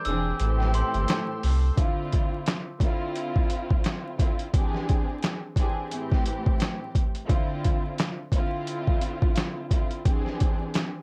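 Reflective yet tough, this boom-bap hip-hop cut from a longer piece has a swung 4/4 groove and a worn, warbling old-tape character with vinyl crackle and pitch drift. In the opening moments, a bright glockenspiel struck with hard plastic mallets rings out a sparkling melody with slapback echo, while a smooth tonewheel organ holds chords with chorus vibrato and a mellow horn section adds tight stabs, both sitting in the background. A deep, round sine sub bass sits up front beneath them, and the kick drops out from 0.4 to 1.8 s. After 1.8 s the glockenspiel, organ, horns and bass have fallen away, leaving the gritty, overdriven sampler-style kit, with its thumpy kick, medium-tuned snare, hi-hat and handclaps, pressed up front over a dark, woody string section bowing distant, lush accompaniment through cassette-tape coloring. The harmony moves through Dm9, E7alt and Am7 in a dry, close sound with little reverb.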